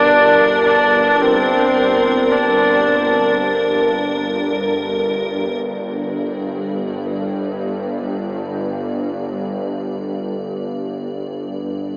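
Unsettling and cavernous, this ambient fragment in G minor floats in free time, cut from a longer piece and set in a vast, echoing space with a long, wet reverb and an AM-radio cast. A clear, husky horsehead fiddle carries the melody with light vibrato and portamento, its earthy bowed tone held between C4 and D4, and it sounds only until 3.4 seconds, trailing off into shimmer reverb and a diffuse ambient delay. Beneath it, a tense, nasal, bowed-like drone sustains from G1 to G2 for the full 12 seconds, sawtooth-edged and detuned with vibrato, sitting up front despite its lower level. Above, an icy glass pad hangs between Bb4 and D5, crystalline and airy, its slow-attack sine layers thickened with chorus and shimmer. The whole passage rests on a single G minor chord, with the second section beginning at 5.6 seconds as the drone and pad continue alone.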